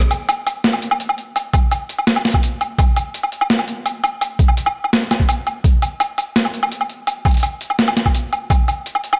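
A half-time drum and bass groove at 168 BPM in 4/4 drives this heavy, dark excerpt, where a gritty, pitched-down boom bap sampler-style kit of hi-hat, rim click, high-tuned snare and woodblock runs throughout while an overdriven electronic kick with a thumpy punch joins at 1.5 seconds and drops out at 8.6 seconds, both parts compressed, up front and re-recorded in a large room under light reverb.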